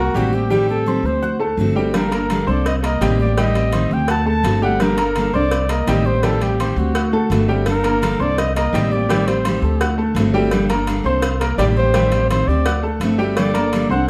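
Danceable and sultry, this Cuban son and guajira passage moves at 168 BPM in a straight 4/4, set in G harmonic minor and cut from a longer piece. A warm flugelhorn carries the melody in a pop-style solo with vibrato and a slapback echo, while a clear, natural baby grand piano plays arpeggios alongside it. The upright bass sits up front with a woody, growly pizzicato tone on steel strings, and a full-bodied picked dreadnought steel-string guitar supplies accompaniment from 0.2 seconds. A round, low-tuned cowbell played with soft hands joins at 1.9 seconds. Briefly, a small, dark fingerpicked nylon-string guitar adds a second line in the background, all within a moderate large-studio reverb over a repeating Cm7, Am7b5, D7, Gmadd9 cycle.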